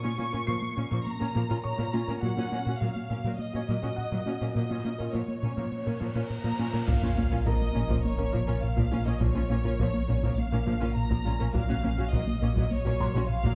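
A lush, vibrato-rich violin section carries the melody over rich bowed violas and a background cello section in this relentless, vast cinematic cue, which blends orchestra and electronics at 103 BPM in Bb minor. A tine-like, chorused synth pluck spins delayed arpeggios, a rubbery, hollow square bass drives a riff, and a soft, felt-muted upright piano adds delayed texture deep in the mix. At 6.2 seconds a huge, dark cymbal swell and sub drop lead into an impact at 6.9 seconds, where a very quiet taiko ensemble, a deep sine sub bass and a close double bass section join, all set in a moderate scoring-stage reverb.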